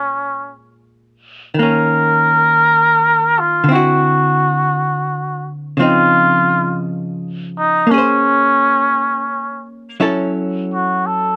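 Dry and closely recorded, this brief passage cut from a longer piece is a tender, intimate jazz ballad at 57 BPM in 4/4 with a gentle swing. A cup-muted trumpet carries the melody up front, its veiled, soft-attack tone touched with vibrato, while a dark, clean, picked hollow-body electric guitar with a compressed sound accompanies throughout. The harmony moves through Bbm7, Eb5, D9, Dbmaj9, Bbm9 and Gbm7.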